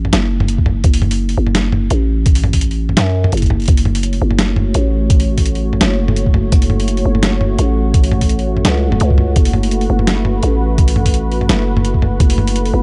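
A growling, buzzy 808-style bass and a gritty, pitched-down boom bap sampler kit of hi-hat, snare and toms open this heavy, cinematic half-time drum and bass excerpt in F# minor at 169 BPM with a light swing. They are joined at 0.6 seconds by a thumpy, compressed electronic kick and at 4.1 seconds by a moody, detuned analog pad with chorus and sidechain pumping, all held on a single F# minor chord in a close, dry, dark and warm mix.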